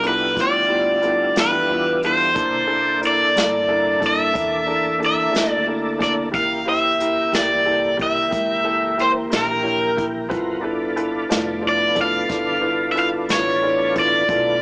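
A bright, overdriven garage guitar sits up front carrying the melody over a soulful, laid-back slow blues at 60 BPM in 12/8, backed by an intimate upright piano with audible action noise, a tonewheel organ's smooth sustained chords through a slow rotary speaker with chorus vibrato and key click, a woody, thumpy pizzicato upright bass, and a dark brushed drum kit with a punchy kick, all set in a moderate spring reverb with a small speaker sound as the chords move from G13 through C13 and C#dim7 back to G13 in this short cut from a longer piece.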